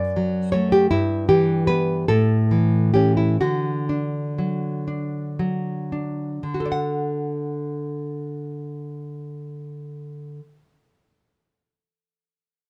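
Tender and nostalgic, this short passage from a longer romantic piece for solo classical guitar drifts in a rubato 6/8 at 37-56 BPM in D major: a dark, up-front nylon-string guitar is fingerpicked from F#2 to F#5 with audible finger squeak, slowing through its opening 6.4 seconds as the harmony moves from F#m through Em/G and A to D, all captured with light reverb in a single live room.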